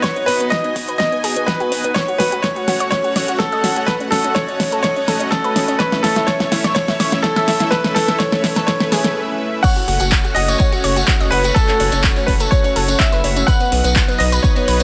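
A bright, intimate grand piano carries the melody with dub echo and sidechain pumping, shadowed by a very quiet, warbling synth bell, over a lush supersaw pad, detuned analog pluck arpeggios under a filter sweep, a deep kick and an overdriven pop kit with fat snare and metallic hats, building with a drum fill toward a brief break at 9.2 s before the drop at 9.6 s brings in a distant jingly tambourine and, at 9.9 s, a round, dark analog bass, in this emotional, bittersweet progressive house excerpt at 125 BPM in F# dorian.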